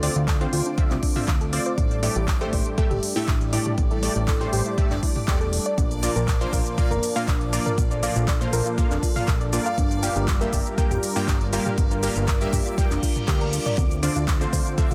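A straight 4/4 groove at 120 BPM drives this dreamy, driving progressive house excerpt in D minor, with a deep, up-front electronic kick arriving at 0.3 seconds over a deep house kit of handclaps, smooth hi-hats and shaker whose hats pump with the sidechain. Electronic toms and congas join at 1.2 seconds, tape-warm and pumping in the background, while a fat, saturated analog bass with a detuned sawtooth-and-square bite anchors the low end under the same pumping. Above it, a soft, round pluck spins dark, wave-folded arpeggios through chorus, cassette tape and tape echo, and a punchy supersaw stab with a sub octave and moving notch fires through its own tape echo. A smooth, detuned pad holds sustained chords behind everything else, joined by a bright, granular backwards swelling texture set high in its built-in reverb. The harmony moves from Dm7 through A7sus4, Bb and Gm7 back to Dm7, with a reverse cymbal sweeping in at 12.9 seconds, all within a dense, heavily limited modern master and light reverb.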